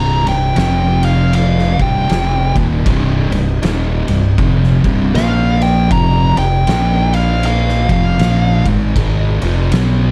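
A fuzz lead guitar, a distorted fuzz riff guitar and a round, punchy fingered bass open this ominous, sludgy stoner and doom metal excerpt together, with an oversized low-tuned drum kit joining at 0.3 seconds. At 79 BPM in 4/4 with a swung eighth-note feel in C minor, the slow groove moves through power chords on C, F and Bb around a C minor chord. The double-tracked riff guitar sits up front with a warm, picked fuzz tone, while the overdriven bass pushes its low register just as close. The dark lead guitar solos high above through wah and slapback echo, dropping out at 8.6 seconds. The drums bring a fat snare, punchy kick and gritty ride in a bright stone room, their rolled-off top keeping the dark production under light reverb.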